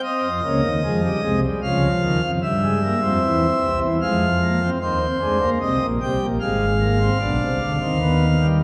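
Set in a straight 3/4 at 75 BPM, this passage moves with a steady, driving pulse that still leaves room for a contemplative mood. It is a baroque-style classical fugue in three parts, in F minor, played by a solo pipe organ on a principal chorus registration that sounds full and romantically voiced, sitting up front in the mix. The organ spans from Ab1 up to G5, filling the whole 8.6 seconds on its own. The harmony travels from Fm through Dbadd9 and C7, returns to Fm, passes through Cm and Fm/Ab, and arrives on G7/B as the excerpt, cut from a longer piece, comes to a close. A wet church reverb with a 2.8-second decay surrounds the organ, giving the sound a spacious, resonant bloom.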